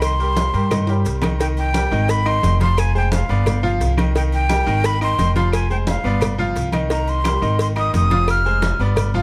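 A breathy jazz flute with vibrato, a crisp chiffing attack and tape echo carries the melody high above this driving, passionate salsa excerpt, over a brilliant, intimate grand piano with audible action noise and long sustain, and a woody pizzicato upright bass sitting up front. Bright, damped congas struck with hard hands and a tight, high-tuned cowbell push the groove, while ringing agogo bells and timbales, saturated claves and grainy, distant maracas sit in the background, with a drum fill at 0.9 seconds. The harmony cycles through Cm7, Ab, Fm and G7 in a close, dry, detailed sound.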